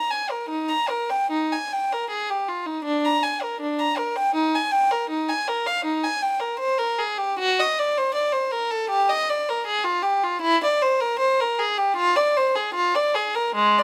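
A rubato 4/4 pulse around 79 BPM gives this baroque-style suite movement for unaccompanied violin a serene, dance-like lilt in Eb major, tuned to A4 = 444 Hz. A single period-style violin carries the whole 13.8-second passage, cut from a longer piece, with a nasal, reedy gut-string tone and an airy bow, ranging from Ab3 up to Bb5. Close, detailed microphones place the player up front, with a light touch of reverb around the sound.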